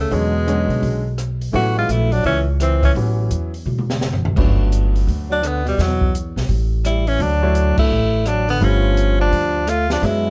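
Playful and sophisticated, this brief excerpt of small-group swing and bop in A major moves at a brisk 170 BPM, with an edgy, punchy tenor saxophone carrying the melody with scooped notes and a plate-reverb sheen while a clear, close-miked second tenor voices a lower line beneath it, both sounding from the start until 2.9 seconds and returning at 5.3 seconds, over a woody pizzicato upright bass sitting up front, a clear, polished upright piano with short sustain, and an open jazz kit with dark cymbals, high-tuned snare and boomy kick whose fill at 3.7 seconds leads into a new section at 4.4 seconds, later punctuated by a band accent at 7.7 seconds, all in a dark, lightly reverberant production.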